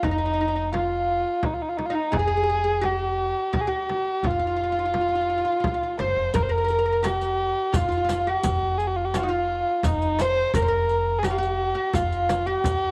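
A dark, nasal kamancheh sings a soulful, longing melody up front with vibrato and portamento, over a plectrum-plucked fretless oud, a woody pizzicato upright bass and a deep, dry frame drum, in this Persian modal excerpt in F dastgah shur at 86 BPM in 3/4, with a dark-jingled riq and a very quiet, compressed tombak entering at 6.3 seconds, all set in light reverb and small room ambience.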